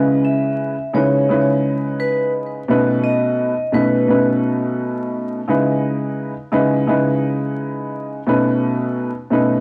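A lo-fi cassette haze hangs over this short hip hop fragment, with vinyl crackle, light reverb and the close air of a small room giving it a gritty, home-recorded feel. At 86 BPM in 4/4 with a swung sixteenth-note groove, the music sits in C# minor, moving between C#m7 and B7 chords for a tough mood. A dark upright piano carries the accompaniment from start to finish, sounding woody, worn and slightly detuned, its action noise audible as it plays up front through cassette coloring and filtering. From 0.2 to 4.3 seconds, a vibraphone struck with hard mallets states a brief melody, its bright, metallic ring heard with the motor off and trailed by tape echo. Once the vibraphone drops out, the intimate piano carries the rest of this clip drawn from a longer piece.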